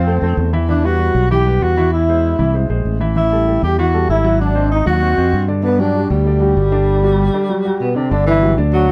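Lightly reverberant and intimate, this short cut from a sophisticated, danceable jazz piece at 194 BPM in G major has a mellow, distant trombone with tape echo carrying the melody over a breathy tenor saxophone second line with vibrato and scooped notes, while a natural-sounding grand piano accompanies and a growly, up-front fingered electric bass drives the chords from F through Emadd9 and Eaug to Ab7 and G5.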